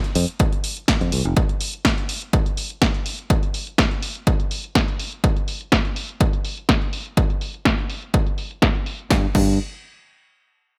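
The recording is dry and close, with little reverb and each of the three parts sitting up front. This cut from a longer filtered disco house track moves at 124 BPM in 4/4 with a light swing on the sixteenths, and the mood is joyful and sunny. A layered, tape-warm electronic house kit opens the cut at 0.0 seconds with a punchy snare, crash cymbal and hi-hats; all three carry a low-pass filter, and the hats and cymbals also pump with sidechain. A growly, direct fingered electric bass, ranging from F1 to G2, enters at 0.2 seconds and appears in brief phrases under sidechain pumping, a low-pass filter and a filter sweep. A punchy analog kick, re-recorded in a large room, joins at 0.4 seconds. The bass returns near the close at 9.1 seconds as the passage shifts.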